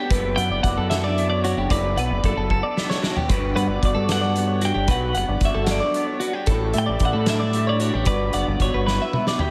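A big arena sound fills this short cut from a longer math rock and midwest emo piece, with lush hall reverb over a small room ambience giving the intricate, playful music plenty of space. A clean, bright twelve-string electric guitar spins arpeggios through spring reverb and slapback echo, while a second compressed, twangy twelve-string carries the melody from 0.4 seconds with its own slapback echo. Beneath them, an electric guitar through a small old amp plays slightly broken-up, lo-fi accompaniment, colored by ensemble chorus and slapback echo. A growling fingered electric bass sits up front with overdrive, joined by a loose indie drum kit with a fat snare, tight kick, rolled-off top and distant, roomy character, which plays fills at 2.5 and 8.9 seconds. The straight 6/8 feel moves through chords from D69/F# to Gmaj9, A7sus4 and Gmaj7.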